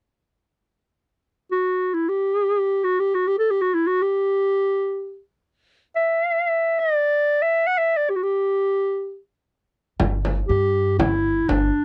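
A warm clarinet carries this short, festive and passionate excerpt of Turkish makam ensemble music, playing a classical-style solo in free time from 1.5 seconds, its tone soft in attack and smooth at the top as it ranges from D4 to F#5. For most of the recording the clarinet sounds alone, up front in a dry, close studio sound with a 1970s character and light reverb. At 10.0 seconds the music moves into a new section as an upright bass and a frame drum join. The pizzicato bass is woody, dark and thumpy, its steel strings sounding between G1 and G2, while the frame drum is deep and large, with a vintage, band-limited quality and hard hand strikes. All three parts sit up front until the clarinet's last note at 11.8 seconds, where the cut ends.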